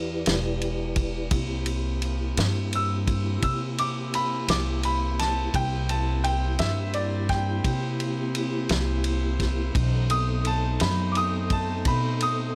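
Soulful and smoky, this slow blues excerpt in 12/8 lays a soft, flute-like tonewheel organ with key click and fast rotary speaker over woody, dark pizzicato upright bass and an up-front drum kit with a fat snare, tight kick and dark cymbals, while a smooth jazz-style horn section holds chords from 1.3 seconds and a bright, brilliant upright piano steps in at 2.8 seconds as the harmony moves from Em7 through C7 to B7b9 under light reverb.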